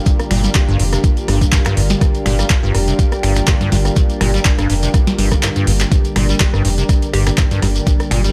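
A lightly reverberant, gritty mix opens this trippy acid house excerpt in G minor at 123 BPM with a gentle 16th swing, where a thumpy, up-front electronic kick (dropping out at 5.4 seconds for a drum fill) and an overdriven analog drum machine of crisp snare, metallic hats, handclaps, snaps and rim clicks drive a squelchy, resonant acid bass riff with filter sweeps and a deep, round analog bass, all under a thick, detuned pad and a lo-fi, phased, warbling second pad, with a grainy shekere in the background and a very quiet hollow square pluck touching G4 at 7.1 seconds.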